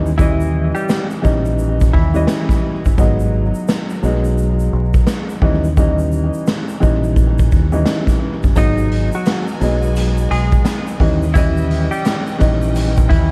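Heard through a small, echo-heavy room with vinyl crackle, this gritty, moody boom-bap hip-hop excerpt swings its sixteenths over a 4/4 groove. A dark, woody upright piano sits up front with audible action noise, its vintage tone colored by cassette tape and analog delay, while a deep dub fingered electric bass adds a round, punchy low end. A raw garage drum kit of kick, snare and hi-hat carries a punchy kick and medium-tuned snare in a bright stone room, its top rolled off, and a grainy egg shaker rustles distantly behind it. A clean, compressed semi-hollow electric guitar with analog delay carries the melody briefly at the start, drops out at 2.5 seconds, and returns at 8.6 seconds. At 8.5 seconds a lush, bowed string section enters in the background with focused vibrato, holding sustained chords as the harmony moves between G#m7 and D#7b9.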